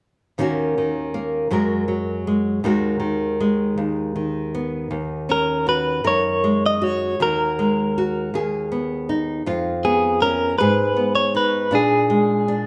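An intimate, reflective acoustic folk-pop ballad in 6/8, cut from a longer piece, opens with a classical-style nylon-string guitar fingerpicking up-front minor-key accompaniment, its finger squeaks audible. At 5.3 seconds a clean, compressed electric guitar, recorded direct and shimmering with tremolo, enters with a bright picked melody that sits just as close. A large studio reverb gives the dark production a sense of space as the chords move toward a tense Bb7 at 11.7 seconds.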